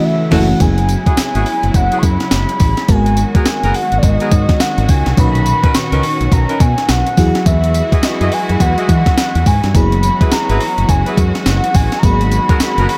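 A dry, up-front mix carries this confident, slick new jack swing excerpt at 105 BPM with swung 16ths, tuned slightly flat to A4 = 436 Hz, where a band accent at 0.0 s gives way to a thumpy, overdriven 12-bit drum machine with a medium-tuned snare, hi-hat, crash and tambourine, a fingered electric bass sitting forward in the mix, glassy bell-like FM electric piano with chorus, distant lush bowed strings holding sustained chords, soft jazz-style horn stabs, and a warbling, horn-like detuned sawtooth synth lead with vibrato carrying the melody over chords moving from F#m7 through F#9sus4, G#m9, Bmaj9 and Emaj9.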